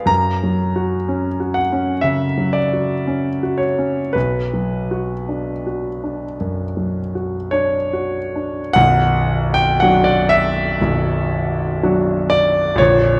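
A solo grand piano opens the recording at 0.0 s, its tone clear and intimate, with the mechanical sounds of the action audible beneath the notes. This is a mournful, melancholic romantic nocturne in B minor, moving slowly between 45 and 63 BPM in 4/4 with a freely breathing rubato. The harmony rests on F# before settling onto B minor at 4.1 s, and the piano's range stretches from a deep A#0 up to A#5. The instrument sits present and up front with a polished finish, while a moderate scoring-stage reverb lends space around it within a dark, warm production. A brief opening statement returns at 8.7 s, and the passage, cut from a longer piece, ends at 13.2 s.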